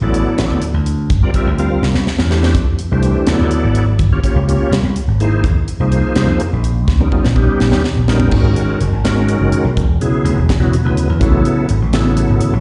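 Funky and driving, this electric jazz fusion cut moves in 6/8 at 83 BPM, counted in dotted quarters, and settles into G# phrygian at 8.3 s after a run of rich extended chords. Punchy, amped slap bass sits up front beside a reedy, lightly overdriven tonewheel organ with chorus vibrato, key click, a slow rotary speaker and slapback echo. A dry, tight funk kit with a high-tuned snare adds fills around 1.8 s and 6.9 s, and the whole thing sounds like a live gig heard through the venue's PA, with recital hall reverb and a muffled top end.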